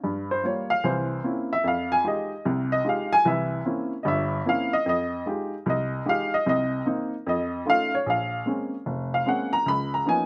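Solo jazz with a moody, swinging feel, carried entirely by an upright piano whose woody, slightly detuned tone and short sustain sit up front across a broad span from the low bass register to the high treble. The harmony moves through dark minor-key changes, opening on a half-diminished chord and resolving to a lush minor ninth, with altered dominants and an augmented seventh adding tension before settling on a thirteenth chord near 9.7 seconds. Recorded outdoors with almost dry reverb, the sound is close and intimate, and this short passage is cut from a longer performance, with a second phrase starting at 8.1 seconds.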